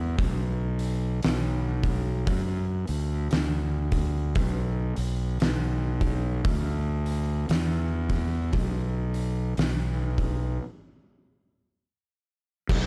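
Heavy and ominous, this short stoner and doom metal fragment, cut from a longer piece, moves at a slow crawl in 4/4 with a lazy swing on the eighth notes. A fuzzed, fingered electric bass carries the low end from the very start, its overdriven, growly tone sitting up front as it moves between B1 and F#2. An oversized, low-tuned acoustic drum kit joins at 0.2 seconds with punchy kick, a fat snare, hi-hat and dark crash cymbals, all sounding saturated and gritty. A break arrives at 10.6 seconds before the fragment cuts off. The production is dark and dry, with very little reverb, leaving both parts close and heavy.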